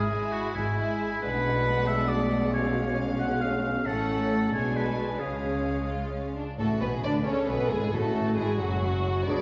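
This dramatic, restless fast romantic movement for symphony orchestra opens with the full string body and a solo oboe sounding together, moving in 6/8 at 90 BPM counted in dotted quarters, in F# minor. The first violins carry the melody with a warm, smooth vibrato, while a second violin section adds a lush, distant counterline and the violas fill in rich accompaniment in the background. Cellos and double basses anchor the bass with clear, even bowing. The oboe stands up front with a clear, roomy tone, then falls away before a mellow French horn section enters with sustained chords at 6.6 seconds, followed by a vintage-toned clarinet line at 7.3 seconds and a brief, articulate timpani stroke played with hard mallets at 7.9 seconds. The whole passage sits in a concert hall reverb, heard from further back in the room with a softened top end, and it is cut from a longer piece.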